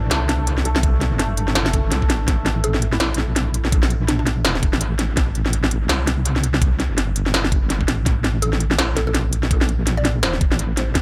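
A swung, half-time drum and bass groove drives this heavy, cinematic excerpt, with an industrial electronic kit pairing a clanging snare and smooth hi-hats, re-recorded in a small room and pushed up front with dub echo. A knocking electronic kick joins at 0.8 seconds. Underneath, a deep, dark wobble bass built from detuned sawtooth and sine tones sits compressed and forward, thickened with chorus. At the opening, a very quiet, tense string-like drone holds sustained chords with vibrato and its own built-in reverb, while a hammered, shimmering santur rings out arpeggios in the background, roughened by vintage 12-bit sampler grit and analog delay until 5.6 seconds. A woody, round, mallet-like FM pluck carries a mellow melody from the back of the mix, colored by phaser, subtle chorus and dub echo, and it returns at 8.4 seconds. The mix is dry of reverb but heavy with echo.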